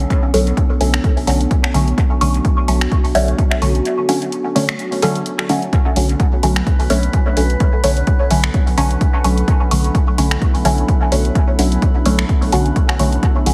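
A 128 BPM pulse with a 56% sixteenth-note swing drives this hypnotic, deep dub techno excerpt in B minor, where a punchy, up-front electronic kick and an overdriven deep house kit of finger snaps and hi-hat soaked in dub echo sit over a clean, smooth sine sub bass on B1, muted, mellow filtered chord stabs on Bm7 smeared by phaser and echo, and a warbling, nostalgic tape-like pad in the background, all breathing with sidechain pumping except the drums, with a break at 3.9 seconds and a glassy, drifting harmonics texture emerging at 6.2 seconds inside a heavily compressed, radio-like sound.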